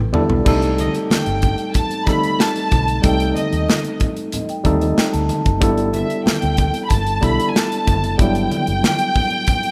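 A rough home-demo mix with light studio reverb frames this excerpt of lush, romantic 1970s-style soul at 93 BPM in a straight 4/4, opening on a drum fill before settling onto Cm6 and then G69 chords. A worn, slightly out-of-tune tine electric piano with light overdrive and a polished acoustic drum kit with a punchy kick sit up front, while a dark, round, foam-muted fingered electric bass holds the low end and low-tuned congas sound distant and very quiet. From 0.8 seconds a bowed studio violin section with vibrato and a smooth top carries the melody, and a mellow soft-mallet vibraphone rings in the background between 4.3 and 5.6 seconds.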